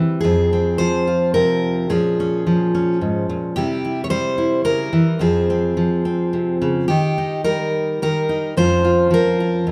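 A fingerpicked steel-string jumbo acoustic guitar plays alone from the start, bright and full-bodied with fresh strings, audible finger squeak and an up-front presence, in a reflective, melancholic folk piece cut from a longer work. It moves in a rubato 3/4 around 108 BPM in F harmonic minor, spanning F2 to Db5 through Fm, Bbm, C and back to Fm before shifting at 6.9 seconds to Eb and a closing Bbm/F. A moderate scoring-stage reverb gives the solo instrument a gentle sense of space.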